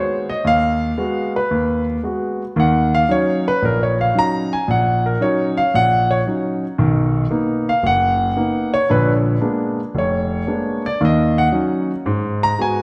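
Heard up front in a church or concert hall with moderate reverb and a 2.1-second decay, an intimate, natural-sounding concert grand piano rings with deep bass, long sustain and audible action noise. This solo jazz passage in Eb minor swings its eighths at 114 BPM in 4/4, carrying a late-night, cool mood across its 12.8 seconds. The harmony moves from Abm7 through Ebm7 and Bmaj7 to a Bb7b9 before returning to Ebm7 and Abm7, in a fragment cut from a longer piece.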